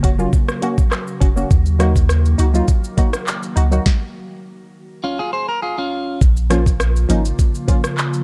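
A bouncy, sultry dancehall excerpt in Bb minor at 102 BPM opens with an up-front electronic drum kit of knocking kick, sharp snare, metallic hats, rim clicks, shaker and handclaps, a punchy sine sub bass with a pitch-drop attack, crisp detuned wavetable chord stabs, and a glassy, ethereal FM pad that pumps under sidechain and shimmers with chorus and its own reverb. Soft, dry maracas sit in the background as the chords move from Gb to Ebm, then a stop arrives at 3.9 seconds, and a bright, compressed, clean electric guitar plays picked arpeggios from 5.0 to 6.2 seconds. The groove settles on Bbm in a final section, with a dark, warm production overall.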